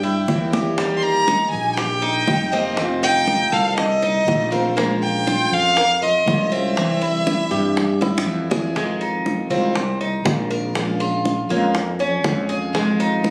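A fill opens this nostalgic, sultry Cuban son and guajira excerpt in F minor at 120 BPM, where a close, expressive bowed violin with vibrato, portamento and plate reverb sings the melody up front until 8.3 seconds over metallic, double-stringed tres arpeggios, a growly, punchy fretless electric bass, and, from 0.3 seconds, a bright, full-bodied jumbo steel-string guitar and low-tuned, dry bongos played with hard hands, all captured on a phone in a moderate studio room before the music shifts to a new section at 8.8 seconds.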